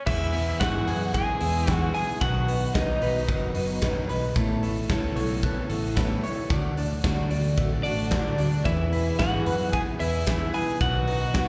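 Jangly indie pop at 112 BPM in E major, nostalgic and youthful, heard as a live club gig through the venue's PA, where a slightly broken-up, compressed lead guitar with slapback echo and digital delay carries the melody while a brilliant, forceful trumpet with light vibrato plays a second line, both pausing from 3.5 seconds until about 7.8 seconds, over a full-bodied jumbo acoustic guitar, phased clean electric guitar arpeggios tucked in the background, a very quiet, lush string machine holding sustained chords, a dark, round foam-muted bass, and a big rock kit up front with a punchy kick and bright cymbals.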